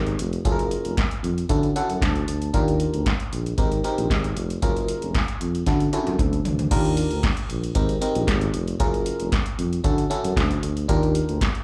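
Heard as a live gig through the venue's PA, the recording carries a touch of club reverb and otherwise little room sound. This danceable, feel-good stretch of early-eighties boogie funk runs at 115 BPM in a straight 4/4 and is cut from a longer piece. A mellow tuba holds the bass up front, punchy with a smooth top and a pop-style vibrato. An FM electric piano comps above it with a glassy, bell-like attack, a warbling vintage tone with a faint noise layer, chorus and slapback echo, and it adds a fill around 1.5 s. An electro analog drum machine, re-recorded in a large room, drives the groove with a deep kick, punchy snare, metallic hats, handclaps, toms and crash cymbal, and a drum fill at 5.7 s leads into a second section at 6.7 s. The harmony cycles through lush major-ninth chords: Gbmaj9, Dmaj9, Ebmaj9 and Abmaj9.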